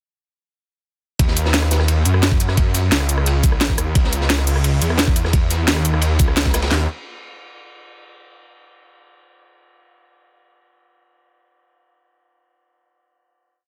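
A straight four-beat pulse drives this brief, mechanical and futuristic piece of dark technical drum and bass, with every part arriving together at 1.2 seconds for a single drop before a final note rings from 6.7 seconds. Up front, one layered electronic kit pairs a knocking kick and cracking snare with handclaps in a broken-beat pattern, all pushed through overdrive, while a second electronic kit adds crisp closed hats, rim clicks, shaker and its own snare for tight, technical detail. Further back, a looped acoustic breakbeat with edits brings gritty, saturated texture, with dark cymbals, a medium-tuned snare and a rolled-off top, its cymbals, hats, snare and room all high-pass filtered. The bass is a thick, lush detuned sawtooth unison blended with sine, with a fast attack and sustained notes, played in chopped phrases and coloured by chorus, tube saturation and sidechain pumping. There is little reverb, and the dense, heavily limited modern master keeps the sound close and forceful.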